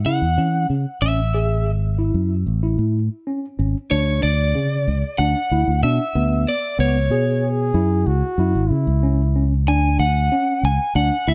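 A slightly broken-up, compressed lead guitar sits up front with plate reverb and tape echo, carrying the melody through this driving, intricate progressive instrumental in 9/8 at 187 BPM (eighths), tuned to A4 = 437 Hz. A round, punchy fingered electric bass anchors it while a worn, slightly out-of-tune tine electric piano, lightly overdriven through its built-in speakers, spins arpeggios over chords moving from Esus2 and Amaj7 to Dmaj7 and C#m7 after a shift at 3.9 s. A close-miked classical-style trombone adds a brief second line from 7.4 to 9.5 s, and the whole short cut from a longer piece has a dark, warm production with light reverb.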